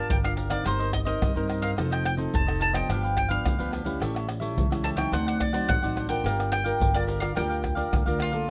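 A straight samba-and-choro groove in 4/4 is driven by egg shaker, deep surdo, pandeiro and tamborim, all close and dry, with a woody pizzicato upright bass underneath. Up front, a picked bowl-back mandolin with double strings carries a nostalgic, yearning melody, while a bright, crisp cavaquinho and a warm, fingerpicked classical nylon-string guitar supply the accompaniment over a minor progression that climbs through dominant chords before settling home. Close, detailed microphones and light reverb frame this short passage cut from a longer piece.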